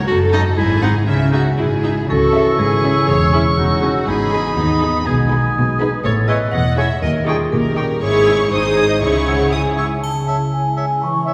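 Quirky and magical, this whimsical cinematic cue in C# minor at 121 BPM in 2/4 sets a lush, expressive violin melody and a dark marimba line over a ringing concert harp's arpeggios. Another violin section, a bright clarinet, a present oboe and an airy, hollow flute ensemble carry second lines, while a viola section plays the accompaniment and focused cello and smooth-topped double bass sections hold the bass. Soft-attack French horn chords join from 2.1 s, and everything sits in a spacious concert-hall reverb heard from further back in the room. After the harmony moves from Amaj7 through D#7 to C#m, a triangle enters at 10.0 s.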